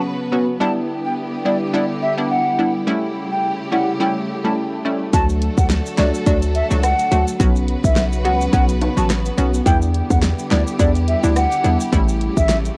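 A swung sixteenth-note dancehall groove in 4/4 drives this summery, bouncy excerpt from a longer piece, though the beat itself holds back until 5.1 s. Before then, a round, bright analog pluck with chorus and a lush bowed string section both pump under sidechain compression, moving through Bsus2, Em7 and A7, with the progression landing on D as the beat arrives. From 0.6 s, a mellow, hollow jazz flute carries the melody, its airy, chiffy attack and vibrato softened by rolled-off highs and trailed by tape echo. At 5.1 s, a punchy electronic pop kit arrives up front with a fat snare, handclaps, hi-hat, rim click and kick, alongside a heavy, fast-attacking 808-style bass and soft-handed acoustic maracas and timbales sitting low in the mix. The pluck, strings, flute and drums carry a cassette-tape colour, and the whole recording has the intimate feel of a small-room home recording on cassette.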